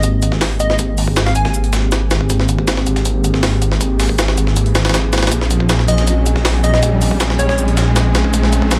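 Drum and bass with a jungle edge at 159 BPM, this dark, frenetic build-up excerpt sets a thick, menacing detuned saw bass up front beneath a warbling, nostalgic tape-like pad on Abmaj9 moving to Bbm11 at 5.3 seconds, while a gritty, pitched-up jungle kit with a thumpy kick and high-tuned snare drives over a compressed breakbeat kit in the background, a punchy, catchy plucky unison lead with dub echo appears at the start and again at 5.9 seconds, an electronic riser enters at 2.9 seconds, and light digital ambience and vinyl crackle colour the sound.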